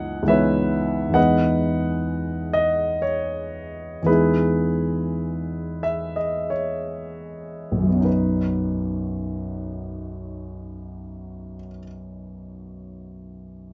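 An intimate concert grand piano opens this dreamy, serene fragment of impressionist classical music, drifting in a rubato 3/4 between 37 and 70 BPM in B major, reaching from deep bass up to G#5. Its up-front, natural tone carries audible action noise under light reverb as C#m9 gives way to Emaj7, the pace slowing through the first 8.0 seconds. A new section then settles onto a Badd9 chord, and the solo piano falls silent at 13.7 seconds.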